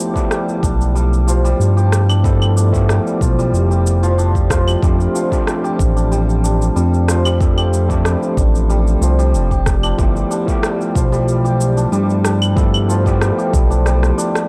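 This organic downtempo excerpt moves at 93 BPM in 4/4 with a gentle 16th-note swing, settling into a peaceful mood in G mixolydian as the chords shift from G13 to F69 at 4.8 seconds and back to G13 at 10.0 seconds. A barky, overdriven tine electric piano played through a combo amp carries the accompaniment with sidechain pumping and tape echo, while a hammered santur rings out shimmering arpeggios, also touched by tape echo. Underneath, a smooth, dark synth bass with tube saturation and a hint of ring modulation sits up front as the loudest part, entering at 0.6 seconds. An electronic kick drum with a deep, layered thump anchors the groove alongside a tape-warmed electronic shaker, rim click and claves, both re-recorded in a small room, and a short drum fill arrives at 13.9 seconds. The overall sound is dry and gritty, with little reverb, giving the piece an intimate, close-up character.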